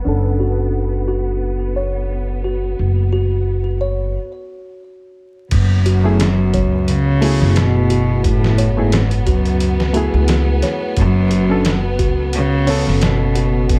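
This brooding, hypnotic trip hop excerpt opens in F# minor at 88 BPM with a slight swing, as a worn, slightly out-of-tune reed electric piano plays chords through its built-in speakers with harmonic tremolo and tape echo. Beneath it, a woody, steel-strung upright bass is plucked up front, a rich bowed string section holds soft-attack chords with vibrato, and a filter sweep shapes both the piano and the strings over a Bm7/F# harmony. From 0.4 seconds a delicate, tinkling music box adds arpeggios through digital delay. A break arrives at 4.2 seconds. At 5.5 seconds the harmony moves to F#m11 as a gritty, compressed, pitched-down sampler-style drum kit enters with a thumpy kick, medium-tuned snare, hi-hat and crash, alongside a dark solo cello melody with gut-string tone, light vibrato and tape echo. Vinyl crackle and a low-pass filter color the studio ambience throughout, giving the whole texture a hazy, dusty feel.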